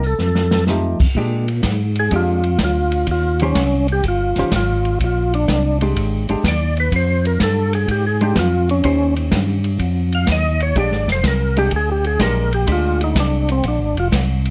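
A swinging 125 BPM groove in 4/4 drives this soulful, greasy soul jazz organ trio excerpt in Bb mixolydian, where a brief drum fill from the airy, up-front kit with dark cymbals and a boomy kick leads into a tonewheel organ solo from 1.2 seconds, the percussive melody organ sounding full and lightly overdriven through a slow rotary speaker, while the bass organ adds key click with its rotary stopped and a clean, fingered hollow-body guitar enters at 0.7 seconds with dark, compressed comping over Bb13 and Eb13 chords in light reverb.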